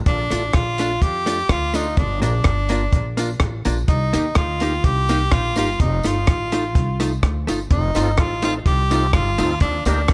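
Upbeat and joyful, this dry ska excerpt puts an edgy tenor saxophone melody with light vibrato and tape echo up front over woody pizzicato upright bass, a punchy compact cocktail drum kit of hi-hat, kick and rim click, clean picked hollow-body jazz guitar accompaniment and a jingly vintage tambourine in the background, while from 7.9 s a gritty overdriven tonewheel organ with key click, chorus vibrato and slow rotary speaker joins the band with stabs.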